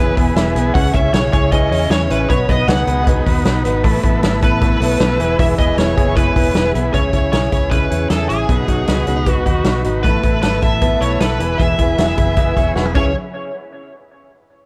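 Wistful and restless, this jangly indie pop excerpt is cut from a longer piece and moves in a straight 4/4 over an echo-heavy, lightly reverberant mix, with a punchy, dark-cymbaled vintage drum kit up front and a round, foam-muted electric bass underneath. A smooth overdriven lead guitar carries the melody through analog delay, while a buzzy, heavily vibrato-laden combo organ, a bright direct-recorded clean guitar picking arpeggios in the background, and a very quiet fingerpicked archtop with audible finger squeak fill out the accompaniment. A lush bowed string section holds sustained chords, dropping out from 6.9 to 10.0 seconds, and a drum fill at 12.8 seconds closes the passage.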